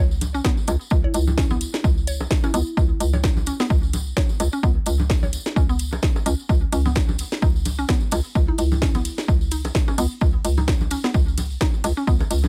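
A woody, nasal synth pluck riff with chorus, delay and sidechain pumping opens this hypnotic, clinical minimal techno excerpt in C# minor at 129 BPM with a light 16th-note swing, over a hollow, bouncy FM bass that sits up front alongside a punchy, overdriven electronic kick, while a house kit of cracking snare, metallic hi-hats and ride, delayed electronic congas and bongos, and a jingly, close tambourine fill out the dry groove, and a mellow soft-mallet marimba drifts in the background at 1.0 seconds and again briefly at 8.5 seconds.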